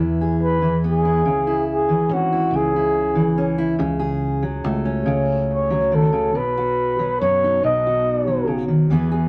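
A fingerpicked steel-string acoustic guitar and a fingered electric bass open this brief folk excerpt together, with a breathy flugelhorn taking up the melody at 0.4 seconds. The mood is hopeful and tender, moving slowly at 47 beats per minute in a straight 6/8 feel. The jumbo guitar sits up front with a full-bodied, dark tone as it carries the accompaniment, while the bass stays lower in the mix, round and direct. The flugelhorn is the intimate solo voice, mellow and whispered, with a soft attack, scooped notes, vibrato and a jazz-style phrasing; it is placed up front and falls silent at 8.6 seconds. The harmony moves from E to C#m, then to F#madd9 over C#, and settles on B, all set in a moderate studio reverb.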